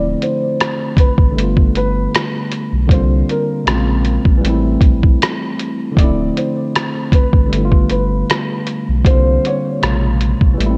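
Melancholic, reflective lo-fi hip hop with a gently swung feel: a soft, boxy felt-muted upright piano carries the melody through subtle chorus and analog delay, over a worn, slightly out-of-tune tine electric piano that sits up front. Underneath, a deep, sine-and-triangle sub bass with octave holds sustained, mellow notes. From 0.2 s, a compressed, muffled sampler-style drum kit adds hi-hat, rim click and a thumpy kick, all in a dreamy, plate-reverb-soaked cassette-tape mix from a longer piece.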